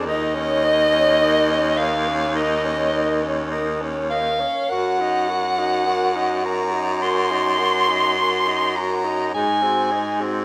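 A close-miked soprano saxophone carries the lyrical melody up front with a warm tone, vibrato and soft attacks, singing between Eb5 and C6 in this classical excerpt for saxophone quartet at a rubato 52 BPM in 4/4. Beneath it, a mellow alto saxophone with light vibrato and a smooth top sits in the background on the second line, while a tenor saxophone accompanies and a baritone saxophone holds the bass up front, both bright and vibrato-laden. The harmony moves from Ebm/Gb to Ab7 near 9.3 seconds, all bathed in the wet reverb of a stone room.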